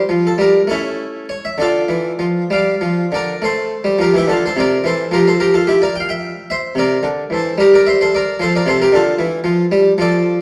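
Swaying in 6/8 at roughly 64-76 beats per minute counted in dotted quarters, this short classical piece moves with a free, rubato feel, like a movement from a baroque-style suite. A lone harpsichord carries it all, introspective and flowing, beginning in D minor before settling into F major from 3.4 s and passing through G minor and C seventh harmonies on the way back to F. The instrument sounds close-miked and up front, with a brilliant, full Italian-style tone and octave strings adding sparkle to each plucked note across its span from C3 to G5. A recital hall's reverb surrounds that dry, immediate attack with a lingering wash. Over it all lies the character of worn cassette tape, whose warbling pitch drift gives the fragment, cut from a longer work, a faded, memory-like quality.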